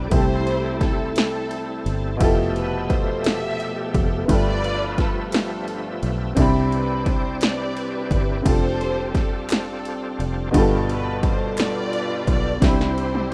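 A punchy analog drum machine sits up front in this slow, reverent gospel passage, its kick, snare, ride cymbal and toms carrying a tape-warm character at 58 BPM in a straight 6/8, and it rounds off with a fill at 12.6 seconds. Beneath it, a fingered electric bass gives a round, foam-muted low end, while a woody, slightly detuned upright piano with long sustain spreads the accompaniment across a broad range. A bright tonewheel organ holds sustained chords with a shouting, lightly overdriven tone, key click, chorus vibrato and a slow rotary speaker. The melody belongs to a lush studio string section, bowed with vibrato and expressive portamento under a smooth top. Crisp, close handclaps join quietly in the background from 7.4 to 11.9 seconds. The hopeful harmony moves through rich extended chords in C major, from Am7/C through Fmaj9#11 and G13 to Cmaj9, in a dry, rough demo-style mix cut from a longer piece.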